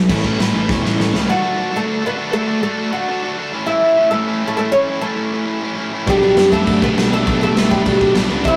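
Rebellious and energetic, this punk rock excerpt charges along at 201 BPM in D major, with an overdriven electric guitar riffing throughout while a sludgy background guitar, growly fuzz bass and a raw, gritty garage drum kit with a punchy kick play together, dropping out at 1.3 seconds after a drum fill and crashing back in at 6.1 seconds. Up front, a bright, woody oud carries the melody from 1.3 seconds over chords moving from A to D, A and G/B. The whole thing has the rough feel of a rehearsal-room recording with light reverb.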